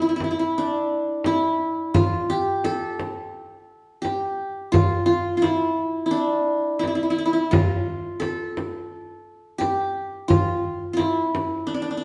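A bright-edged qanun, plucked with fingerpicks, its triple strings ringing up front, opens this festive Turkish makam ensemble piece at 86 BPM in a straight 4/4, carrying the melody between D4 and A4. A deep, large frame drum joins at 0.2 seconds, struck with soft hands and heard close and dry, and it stops at 11.5 seconds. The players perform live together in a reverberant stone room, and the 12-second passage is cut from a longer piece.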